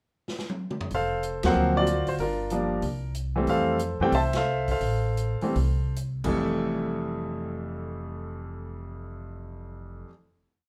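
Swung eighths in 4/4 drive this short, sophisticated jazz piano trio piece, which opens with a drum fill at 0.3 seconds on a distant, roomy kit with dark cymbals, a punchy kick and time kept with sticks on the hi-hat. A clear, intimate baby grand, up front with audible action noise and long sustain, states a motif-based melody in period phrases over syncopated, rootless comping, while a woody pizzicato upright bass plays in two; the band hits accents at 1.4 and 4.3 seconds, and the tempo slows from 3.5 seconds. The drums drop out as the piano and bass close on a final hit in a moderate club reverb.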